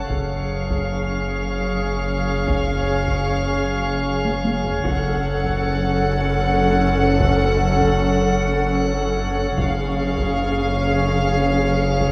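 Muted, bowed strings open this ominous suspense film cue at once. A veiled violin section carries a narrow melody between E#5 and F#5, while dark violas accompany with soft attacks and light vibrato. A glassy harmonics texture drifts above in calm sustained chords with chorus and its own reverb, and a lush cello section sits in the background on a low F#. The double basses, distant and con sordino, pair with a deep, thick, saturated sub bass drone on F#1, giving the bottom a heavy anchor. A very quiet taiko ensemble with heavy sticks plays underneath at 76 BPM in 3/4, with a brief drum fill from 4.2 to 4.8 seconds, as the harmony moves from C# over F# to F# minor and back at 9.6 seconds. A moderate concert hall reverb surrounds the players in this mysterious excerpt in F# harmonic minor.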